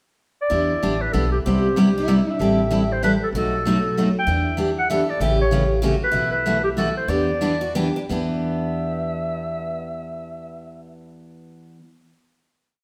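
A swung 3/4 pulse drives this short, fiery and bittersweet piece of acoustic string swing, with a dreadnought-bodied picked steel-string guitar picking every beat up front, short and accented on two and three, while a dark, thumpy pizzicato upright bass plays root-and-fifth lines with walk-ups. Over them a vintage-toned clarinet with vibrato and a soft subtone attack sings a motif-based jazz melody in sentence-like phrases, as a bright, boxy parlour guitar weaves a quieter counter-melody beneath. The band plays live together in a stone room with a wet reverb, slowing from 6.1 seconds before settling on a final chord at 8.1 seconds.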